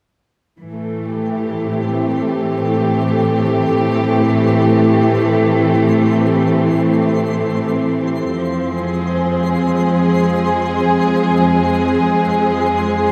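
Bathed in a vast, echoing cathedral reverb, this reflective, serene ambient excerpt floats in free time as a dark, intimate string section holds soft-attack sul tasto chords with shimmer reverb up front over a clear, smooth cello section bass, while a twinkling granular texture with an octave-up shimmer enters at 1.3 s and fades in from the background, the harmony moving from Am7 to Fm at 8.3 s.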